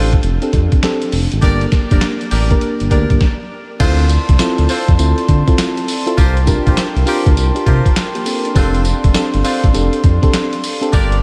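A warbling FM electric piano, mellow jazz-style horn stabs with light vibrato and tape echo, and a smooth, up-front sawtooth synth bass open this bouncy, slick new jack swing excerpt at 101 BPM, joined almost at once by a gritty, pitched-down boom bap sampler kit with a thumpy kick, handclaps, tambourine and crash. After a brief stop from 3.2 to 3.8 seconds, a glassy, ethereal glass harmonica enters with close-miked sustained chords as the harmony moves from Dm7 to C7sus4 and back to F6. The swung sixteenth-note groove sits in light reverb, with the drums carrying 12-bit sampler grit and large-room ambience and the whole recording showing lossy compression artefacts.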